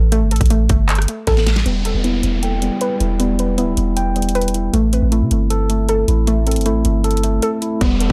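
Eerie and brooding, this half-time trap and hip hop cut from a longer piece moves at 156 BPM in 4/4, tuned to A4 = 442 Hz. A soft, round pluck plays arpeggios from the start, its detuned, chorused tone carrying a noise layer and a filter sweep through a low-pass filter and analog delay. Underneath, a long, sine-based 808-style bass sits deep and dark up front, and a produced trap kit of hard-clipped kick, sharp snare, metallic hats, handclaps and rim click enters almost at once, with a drum fill leading into the next passage. At 1.7 seconds, as the harmony shifts from A7(no3) to Em and later Am7, a mellow, clean tine electric piano joins up front through a low-pass filter, and an electronic downlifter descends, returning briefly at 7.8 seconds. A filter sweep runs across this middle stretch, and the whole mix sits in a digital, echo-heavy ambience.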